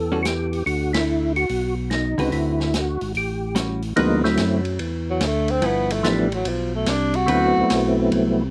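Soulful and swinging, this short soul jazz organ trio cut lands a band accent at 0.9 seconds: a round, dark percussive tonewheel organ carries the melody through chorus vibrato and slapback echo, while a thick, gritty overdriven tonewheel organ with key click holds down the bass, both turning through a slow rotary speaker. A clean, compressed hollow-body guitar comps underneath, and a vintage kit with a medium-tuned snare, hi-hat and ride cymbal sits mid-forward with a warm, rolled-off top. At 5.1 seconds a mellow tenor saxophone with light vibrato and a soft attack steps up front for a solo, all in a dry, outdoor sound.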